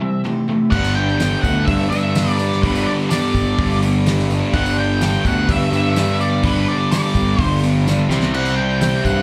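Heard live through a club PA, this swaggering, sunny classic rock excerpt opens on a dark, fuzzed octave lead guitar with slapback echo, a very quiet jumbo steel-string acoustic with finger squeak, and two background riff guitars, one cranked and bright and one crunchy. At 0.7 seconds a growly, punchy fuzz bass joins up front, with a damped 70s kit of fat snare, tight kick and dark cymbals and a jingly tambourine, and a drum fill at 7.9 seconds leads back to C.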